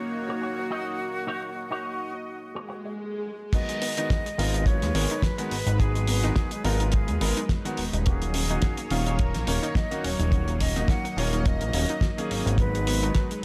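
Nu-disco at 106 BPM in G# dorian, this groovy, sleek passage, cut from a longer piece, opens with a breathy jazz flute carrying the melody through tape echo over clear concert grand piano, a lush chorused and phased pad, and a twangy envelope-filtered electric guitar riff that drops out at 2.9 seconds as an electronic swell builds. At 3.5 seconds the drop arrives with a tight, dark kick up front, a damped 70s kit with a fat snare and rolled-off top, very quiet analog pluck arpeggios, and, from 4.4 seconds, a fat, nasal, saturated analog bass with sidechain pumping. The harmony moves between D#m7 and G#m7 in a lightly reverberant studio space.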